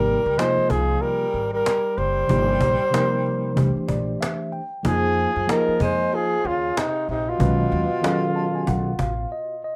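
Mellow and smoky, this short jazz-hop cut from a longer hip hop piece sways on a swung sixteenth-note feel in 4/4. A breathy flugelhorn carries the melody up front with light vibrato and a soft, whispered attack, sounding distant and roomy at once. Beneath it, a tenor saxophone plays a lower second line with scooped notes and vibrato, and both horns trail an analog delay. A clean, direct tine electric piano supplies the chords through Abmaj9, Eb69/G, C7, Fm7 and B7#11, adding fills at 3.6 and 8.0 seconds, while a pizzicato upright bass with steel strings gives a woody low end and a band-limited, vintage-sounding cajon is played with hard hands and faint snares. The horns drop out at 9.3 seconds for a brief break, leaving the electric piano to close in a wet small room with the loose character of a rough home demo.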